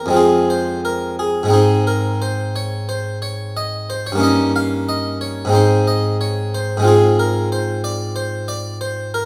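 The rhythm moves in a flexible 4/4 at about 90 BPM, with a rubato feel that lets the pulse breathe. This solemn, introspective baroque-style suite movement comes from a longer piece and features a solo harpsichord from 0.0 to 9.3 seconds, ranging from F2 to F5. The instrument is French in style and strung with one set of strings, giving a plucked, round tone that sits up front in the mix. The harmony travels from Fm through Ab and Eb7/G, back to Ab, and settles on Fm/Ab near 6.9 seconds. A wet recital hall reverb with a 1.3-second decay surrounds the instrument, and the tuning rests at A4 = 441 Hz.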